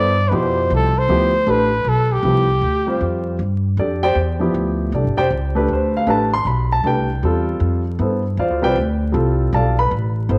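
Jazz in a lilting three-beat swing, hypnotic and searching in mood, cut from a longer piece. A breathy, whispered trumpet carries the melody up front with vibrato and a soft attack, playing only until 3.3 seconds before falling silent. A grand piano with audible action noise and short sustain provides intimate accompaniment throughout, opening on a G9sus4 chord. An upright bass, plucked on steel strings with a woody, acoustic tone, holds the low end for the full length alongside the piano. The sound sits in a small room with a wet spring reverb, and vinyl crackle adds a worn patina to the recording.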